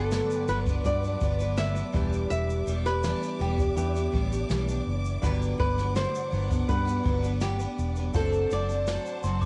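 Acoustic pop in G major at 82 BPM, this short, sunny and heartfelt excerpt moves at an unhurried, straight 4/4 pace over Gmaj7, Em7 and D7/F# chords. A fingerpicked flamenco guitar carries the melody until 9.2 seconds, its tone carrying audible finger squeak and a cassette-tape grain with plate reverb. Beneath it, a bright, full-bodied jumbo steel-string guitar is picked and double-tracked, while a clear, woody upright piano with short sustain sits very quietly in the background and a dark, lush string section holds bowed chords with vibrato and portamento. A round, punchy, foam-muted electric bass sits up front, and a jazz kit played with brushes adds a boomy kick, snare and shaker from 0.1 seconds. At 9.2 seconds a very quiet, bell-like glockenspiel with soft plastic mallets enters with a brief second line, all within a lo-fi home cassette sound whose top end is rolled off.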